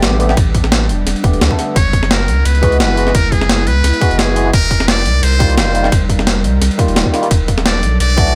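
Swung sixteenth-note breakbeat drums with a gritty, compressed snare, hi-hat and ride drive this soulful, melancholic liquid drum and bass excerpt, joined at 0.4 s by a tight, overdriven electronic kick, while a round, deep sine sub bass anchors chords of A9sus4, F#9sus4, F9sus4 and E9sus4, a barky tine electric piano through a combo amp with phaser and digital delay accompanies alongside a glassy, ethereal FM pad that pumps in the background, and a buzzy, close-miked trumpet with a metal mute plays a jazz-style solo melody with vibrato and tape echo.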